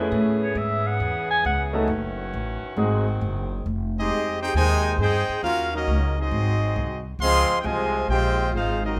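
A swung 4/4 at 135 BPM drives this brassy, dramatic jazz fragment, cut from a longer piece and settling into F minor from 3.7 s. An acoustic upright bass, woody and growly with pizzicato attack, sits up front and runs through the whole nine seconds. In the opening seconds a clear concert grand piano comps with an intimate, polished tone and audible action noise. Beneath it a vintage saxophone section holds soft, tight sustained chords with light vibrato, while a warm clarinet takes a brief subtone solo with a gentle attack and vibrato. At 4.0 s a close-miked, bright trumpet section seizes the melody, shadowed by a brilliant trombone section on a second line, both with light vibrato. The harmony moves from Amaj9 through G#7 into Fm9 and on toward Dbmaj9, all set in a moderate large-studio reverb.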